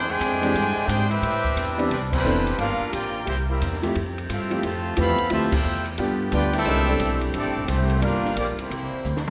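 Brassy and swinging, this short big band passage, cut from a longer piece, moves at a brisk 176 BPM in C major with a moderate swing feel. Up front, the brilliant trumpet section carries the melody with light vibrato, while the mellow, tight trombone section plays a second line beneath it and a very quiet, clear saxophone section holds sustained chords. A woody, growly upright bass with steel strings is plucked and sits forward in the mix, and an open jazz drum kit with a high-tuned snare and boomy kick enters at 0.2 seconds. A clear concert grand piano with deep bass and long sustain comps from 0.4 to 8.5 seconds over rich harmony that opens on E7alt and runs through minor eleventh and ninth chords before settling on C6 and closing on C9. The whole band hits accents at 2.1 and 5.5 seconds, a drum fill arrives at 9.1 seconds, and a moderate concert hall reverb gives the ensemble a spacious finish.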